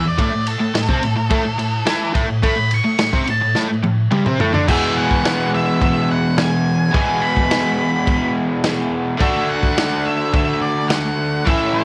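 An octave-fuzz lead guitar, dark and distorted, takes a picked solo through the first 4.7 seconds of this rowdy, swaggering garage rock excerpt, while a bright, double-tracked overdriven electric guitar pounds out the riff up front and a gritty, saturated breakbeat drum kit with a tight kick and rolled-off top plays a fill from 3.6 seconds leading into the second section, the whole band set in studio reverb.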